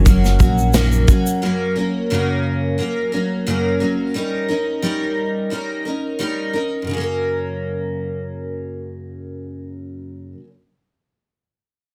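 A bright, full-bodied, double-tracked steel-string acoustic guitar opens this easy-going acoustic pop excerpt at 88 BPM in F# major, alongside a very quiet fingerpicked nylon-string guitar and a woody, thumpy pizzicato upright bass, with an up-front small-room country drum kit (a punchy, softly clipped kick, snare and shaker) and a grainy, close tube shaker arriving at 0.1 seconds. The bass stops at 1.0 seconds and the drums and tube shaker at 1.4 seconds, and the nylon guitar soon drops away too, leaving the dreadnought to carry a carefree, lightly swung 16th-note feel over F# and D#7/G. Light reverb sits over a dense, heavily limited modern master.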